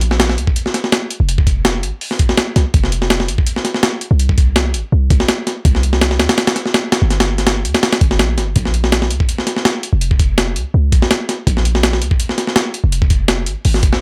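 Raw and atmospheric, this lightly swung drum and bass and jungle excerpt at 165 BPM in Bb dorian puts a gritty, compressed, tape-warm breakbeat kit up front, with a thumpy kick, medium-tuned snare and hi-hat that sound re-recorded in a small room, over a deep, boomy, sine-toned 808-style bass whose fast-attack, decaying notes span F1 to Eb2, all in a dry mix.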